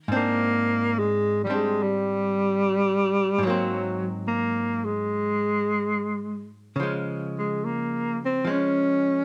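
Swung eighths in a slow four set the pace for this wistful, smoky jazz ballad, cut from a longer piece. A dark, clean, hollow-body archtop guitar, picked and compressed, comps underneath from the start, and a mellow alto saxophone takes the melody up front at 0.2 seconds with subtone, vibrato and scooped notes. Light reverb gives the room a soft glow as the harmony moves through lush major and dominant colours.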